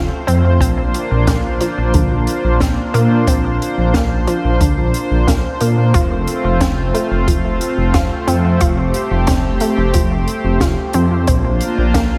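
A dark, detuned saw bass sits up front with a deep, rumbling, beating tone and tube saturation, pumping under sidechain compression throughout this 12.2-second excerpt of nostalgic, uplifting synthwave in F major at 90 BPM in a straight 4/4. Above it, a chorused pulse-width pad holds sustained chords between A3 and C5, its shimmering, retro sound roughened by vintage 12-bit sampler grit and breathing with the same sidechain pumping. Further back, an analog pluck spins arpeggios from D3 to F4, nasal and round with a wave-folded edge, colored by chorus and analog delay. An open jazz kit with a high-tuned snare and hi-hat comes in at 0.3 seconds, and a boomy acoustic kick follows at 0.6 seconds. The harmony moves between F and Bbadd9, all set in light reverb with a small room ambience.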